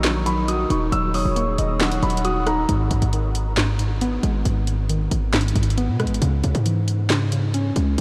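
Melancholic yet hard-hitting, this short cut from a longer trap and hip hop piece moves at 136 BPM with a half-time feel in G# minor, drenched in a huge ambient reverb that gives the whole mix a dreamy, soaked atmosphere. For the first 2.7 seconds, a dark, boxy grand piano carries the melody through an analog delay, shadowed by a soft, breathy flute-like synth lead with vibrato sitting in the background, while a nostalgic, wave-folded tape-like pad holds sustained chords beneath them. By 2.7 seconds those three parts have fallen away, and the harmony shifts from D#m to G#m, later moving to C#m at 6.2 seconds. Throughout, a warbling, lo-fi dusty pluck with detuned square and sawtooth tones and a filter sweep plays the accompaniment under chorus. Up front, a punchy, heavy 808-style bass anchors the low end, and an overdriven electronic trap kit of handclaps, hi-hat, rim click and a sharp snare drives the groove.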